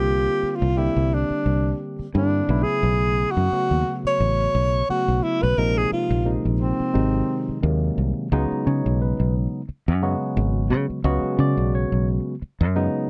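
A breathy alto saxophone, a barky tine electric piano through a phaser and a punchy, foam-muted fingered electric bass open this nocturnal, funky electric jazz fusion excerpt together, with a swung sixteenth-note feel over drifting sus chords. The close-miked sax plays an intimate, whispered solo melody with vibrato, subtone and scooped notes until 7.6 seconds, leaving the bright, clean piano and the direct bass to carry a new section from 8.3 seconds. The production is dark and dry, with all three parts up front.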